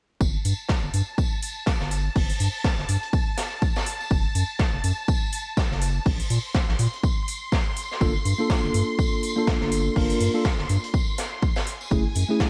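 At 0.2 seconds this deep house excerpt opens with a punchy, up-front electronic kick, a round analog bass with sidechain pumping, a gritty, saturated garage drum kit playing hi-hat, snare and tambourine, and a shimmering vintage string machine of violins held high under an ensemble chorus. An electronic hi-hat with a metallic edge joins at 0.4 seconds, and the kit's small, pumping room carries studio and gated reverb, with its hats and percussion pumping as well. The groove sits at 123 BPM in 4/4 with a swung sixteenth feel, and the mood is deep and warm in G minor, moving from Gsus2 through F#m and Bbsus2. At 8.0 seconds a mellow tine electric piano enters with up-front stabs, colored by subtle chorus, digital delay and sidechain pumping, as the harmony turns to Gm9 and then F#m9. The bright 1980s-style digital production is lightly washed in reverb and dusted with vinyl crackle, keeping a warm glow.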